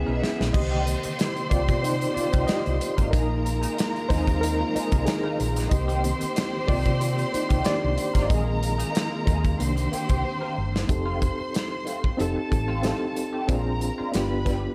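Cinematic and bittersweet, this lush 1970s-style soul excerpt in C minor moves at 93 BPM with a swung feel, as a reedy, fast-tremolo electric piano takes a solo from 0.5 to 10.9 seconds over a round, dark hollow-body bass, a punchy up-front drum kit with fills, a slightly broken-up wah guitar riff with spring reverb, a distant, focused violin section carrying a second line, and background strings holding sustained chords until 10.9 seconds, when the harmony shifts toward F7 and Bb7.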